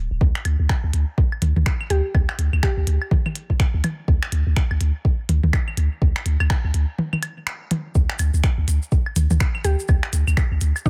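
Sparse and quirky, this fragment of minimal techno rides a swung sixteenth-note feel, built on a deep, punchy sine sub bass with a pitch-drop attack, tube saturation and sidechain pumping, and an up-front soft electronic kick. Around them sit a clicky, tape-warm click kit of finger snaps and hi-hat re-recorded in a small room, plus analog electronic woodblock, toms and claves with tape echo. A woody, round FM mallet-like pluck with chorus and tape echo appears briefly from 1.9 s, and after a break at 7.0 s, grainy, close maracas join at 7.9 s in an otherwise dry mix.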